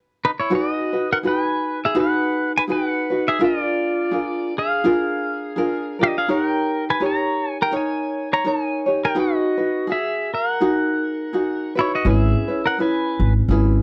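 A bright, twangy electric pedal steel guitar played with fingerpicks and slide carries the melody up front with volume swells over a light, fingerpicked acoustic tenor ukulele in this sunny, dreamy Hawaiian swing excerpt at 83 BPM in G# minor, moving through G#m7, A#7 and D#7 in a dry, close 1970s-style studio sound before a woody, dark pizzicato upright bass enters at 12.1 seconds.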